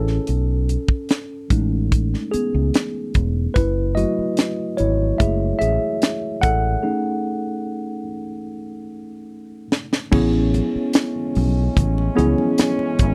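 A mellow tine electric piano takes the lead in this smooth, cinematic slice of lush 1970s-style soul, its worn, slightly out-of-tune tone sitting clean and up front as it solos through the opening section. Beneath it, a round, dark fingered electric bass and a tight funk drum kit with a high-tuned snare and tight kick hold a straight, unhurried groove. A break arrives at 6.8 seconds, and a drum fill carries the music into a new section at 10.1 seconds. There a French horn section enters with sustained, classical-style chords marked by light vibrato and a smooth top. Damped, low-tuned congas and a very quiet, jingly tambourine sit in the background. The close, dry studio sound keeps the keys, bass and drums intimate and present, and the passage is cut from a longer piece.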